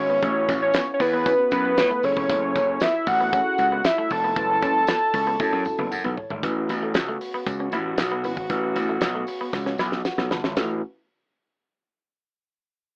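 A fat, detuned analog lead carries the melody up front for the first 6.2 seconds of this feel-good, smooth early-eighties boogie funk excerpt, over growly overdriven slap bass, a damped dry drum kit with handclaps and a fat snare, a twangy chorused clean guitar riff, mellow tine electric piano that adds fills, a very quiet French horn section holding sustained chords, and a faint jingly tambourine, all with a rough home-demo, AM-radio character.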